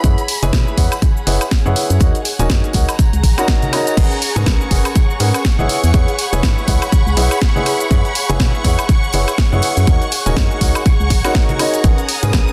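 A punchy electronic kick drum sits up front in this bittersweet, energetic piano house excerpt at 122 BPM in 4/4, with a 58% swing on the sixteenths. A warm, natural baby grand piano carries the riff between C#4 and G#5, treated with delay and sidechain pumping, while a hollow, percussive FM bass with an organ-like tone, a fast attack and a decaying body pumps underneath from D#1 to B2. The layered, tape-warm house kit adds a cracking snare, hi-hat, shaker, woodblock and crash cymbal, and bright, saturated tambourine and congas played with soft hands sit in the background. A dark, lush symphonic string section with expressive vibrato provides a bowed texture throughout, and at 4.0 seconds a shimmering vintage string machine of sawtooth violins joins with slow-attack sustained chords high up, thickened by ensemble chorus. The chords move through F#9sus4, D#m7, G#m11 and E69, and the dense, heavily limited modern master keeps the sound dry.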